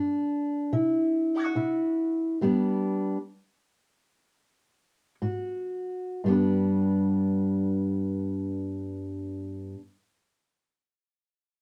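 A dark, up-front fingerpicked steel-string acoustic guitar carries this swaggering, gritty acoustic country blues fragment in a swung 4/4, with a metallic, nasal lap resonator guitar played slide with fingerpicks adding a quieter plate-reverb melody until 5.1 s, as the music slows over its opening, halts at 2.4 s, and the guitar plays on alone until 9.8 s in a moderate studio room.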